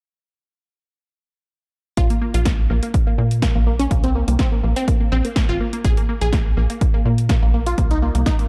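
Dark, digital ambience frames this short progressive house excerpt, a dreamy, bittersweet passage at 124 BPM in a straight 4/4, tuned to A4 = 439 Hz. Everything enters together at 2.0 seconds over a rootless Abadd9 chord: a punchy, tape-warm electronic kick sits up front, while a house kit adds a punchy snare and warm hi-hats further back in the mix. Beneath them, a tight sequencer bass drives between Ab1 and Bb2 with a sawtooth-and-square tone, ring-modulated colour and a fast, decaying filter pluck that stays mellow, pumping through sidechain compression. Above, a lush unison pluck plays arpeggios from Bb3 to Ab4, its detuned sawtooth voices blended with a noise layer and a wave-folded sine, shaped by a filter sweep and a moving notch, and trailed by tape echo and the same sidechain pumping. The bass drops out at 8.2 seconds and the kick at 8.4, leaving the pluck and the kit to close the clip at 8.5.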